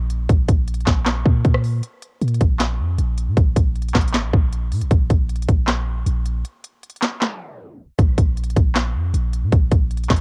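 A clean, sine-like 808-style bass opens this melancholic, menacing trap excerpt, its deep, boomy notes striking with a fast attack and then decaying into a dark low end. Almost at once an electronic trap kit joins, with a hard-clipped kick, sharp snare, crisp hi-hats, handclaps and rim clicks set up front alongside the bass in a half-time feel. The kit carries a cassette-tape colour, and the whole piece has the dry, close sound of a home cassette recording with little reverb. Short breaks interrupt the groove, and a tape stop at 7.2 seconds drags the music down. From 8.0 seconds a new section begins and runs until the cut at 10.2 seconds.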